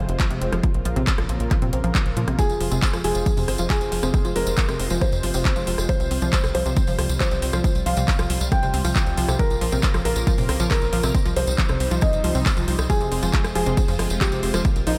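Uplifting trance with an emotional, soaring mood, this fragment of a longer track moves in a straight 4/4 feel over a chord cycle that settles back home on the tonic near the end. A punchy, overdriven electronic kick sits up front, joined by a layered big-room dance kit of handclaps, rim clicks and metallic hi-hats that pump with the sidechain, while a distant, jingly tambourine in a large room enters at 2.4 seconds. Underneath, a tight sequencer bass drives with sawtooth and square-wave bite, a moving notch and tube saturation, pumping with the sidechain. A round, detuned analog pluck spins arpeggios through subtle chorus and digital delay, and a lush supersaw pad holds sustained chords in the background through a phaser, its low-pass filter sweeping across the whole passage. From 2.4 seconds a soft, felt-muted upright piano adds an intimate, mellow second line with audible action noise and delay, all set in light reverb and digital ambience.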